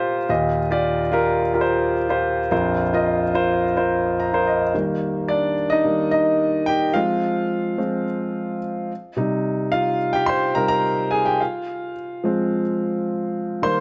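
Warm and hopeful, this short solo piano excerpt from a longer pop piece moves at 108 BPM in a straight 4/4 feel in Eb major. A concert grand carries everything from start to finish, ranging from Bb1 up to C6, with deep bass, long sustain and audible action noise that makes it feel intimate and up front. The opening phrases rest on Ebadd9 and Bbsus2 chords, and a piano fill at 3.9 seconds leads into the next passage. From 4.7 seconds the piano takes a solo over a progression moving through Eb, Fm, Cm and back to Fm. Light reverb surrounds the present, polished sound.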